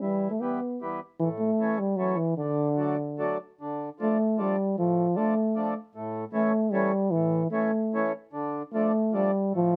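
Jolly and festive, this short alpine folk passage at 152 BPM in a straight 3/4 features a warm, smooth-topped euphonium singing the melody up front in a classical style with light vibrato, carried by a reedy, full accordion accompaniment, as the music moves from D major into D harmonic minor at 3.6 seconds, all captured close and detailed with light reverb.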